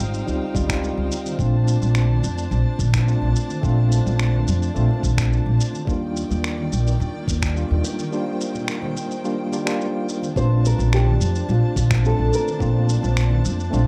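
Sunset chillout in Bb major at 107 BPM, sunny and smooth, where a woody, up-front pizzicato upright bass anchors a worn, slightly out-of-tune tine electric piano with overdrive and delay, rich bowed strings carrying vintage 12-bit sampler grit and plate reverb, a gritty, thumpy electronic kick with shaker and finger snaps, and very quiet, distant bongos and congas, before a thumb-plucked nylon-string guitar joins with the melody at 10.4 seconds over chords moving from Dbmaj9#11 through Bbmaj9 and Ebmaj7, all in a rough home demo mix with light reverb.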